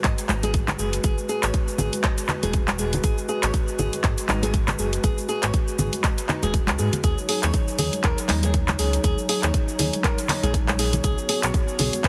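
A driving, hypnotic afro house groove at 120 BPM in G# minor swings its sixteenths under a punchy, up-front electronic kick and a house kit of handclaps, bright hats and shaker, with close, dry congas entering at 0.3 seconds in the background, while a smooth gliding sawtooth synth bass with tube saturation, dark fingerpicked flamenco guitar arpeggios trailed by tape echo, and a deep, nasal, detuned analog pad with chorus all pump to the sidechain through chords moving from G#m7 to D#m7 at 7.0 seconds and Bsus2, the mix sitting in light reverb with a heavily compressed radio sound in this fragment of a longer piece.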